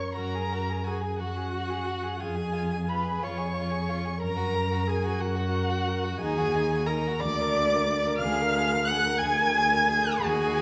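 In a rubato 6/8 at 60 BPM, counted in dotted quarters, this slow, romantic string-quartet movement in F# major unfolds with an elegiac, yearning mood across a 10.6-second excerpt drawn from a longer piece. A rich, focused first violin carries the melody from a distant placement, while a close, expressive second violin adds a soft-attacked line with portamento, and a warm viola supplies smooth, even accompaniment. Beneath them, a dark, woody cello sits up front on the bass; all four players use vibrato, and the whole is bathed in the wet reverb of a recital hall.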